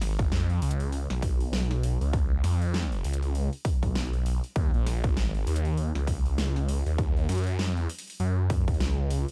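A thick, detuned sawtooth bass swirls through a phaser from 0.0 s, saturated and up front with a fast attack and sustained notes between Ab1 and Gb2, carrying this gritty, swaggering glitch hop excerpt in Eb minor at 99 BPM with a 16th-note swing. A punchy, tape-warm electronic kick joins at 0.2 s and sits forward, while a layered dubstep kit adds a huge snare and metallic hi-hats lower in the mix, both drum parts touched by studio reverb. The dry, gritty hardware sound keeps the short cut tight and raw.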